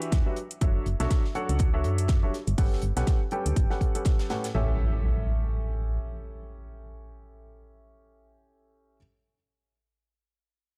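Piano house with an uplifting, joyful mood, heard as a short cut from a longer piece with a swung sixteenth-note feel. A bright, woody upright piano carries the riff throughout the clip, intimate and polished with audible action noise, shaped by sidechain pumping, a low-pass filter and delay, and it moves through rich chords from Dmaj9/F# to Gmaj9#11 before landing on A7 at 4.5 seconds. Underneath, a round, punchy FM bass with a fast attack and decaying notes sits up front with its own sidechain pumping, playing until 6.0 seconds, while filter sweeps on both bass and piano run through the opening 4.5 seconds. The drums combine a layered, tape-touched electronic kick that hits hard at the front of the mix, metallic electronic hi-hats re-recorded in a small room, and a dry acoustic reggae kit whose high-tuned snare and hats are thinned by high-pass filtering. The beat drops out around 4.5 seconds, and an electronic impact sound enters at 4.7 seconds and runs alongside the piano to the end. 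The production is dark and warm, with little reverb.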